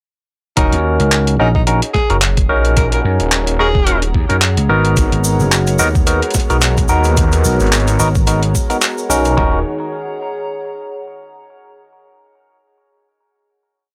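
Playful and funky, this glitch hop piece in Eb minor moves at 109 BPM with a swung 16th feel. Gritty, overdriven boom bap drums with a thumpy broken kick and toms, an up-front snare, claps and closed hats sit over a swirling, saturated phased saw bass and a bright, growly slap bass trading chopped phrases, while a barky tine electric piano with phaser and pumping plays rootless chord stabs. A breathy, scooped tenor saxophone drifts through tape echo in short answering phrases until 4.0 seconds, a warbly, nostalgic tape-like pad hovers darkly in the background, and a soft analog pad and grainy tube shaker join at 5.0 seconds as the chords move from Ebm7 to Abm9 before a final Ebm7 rings out from 9.4 seconds.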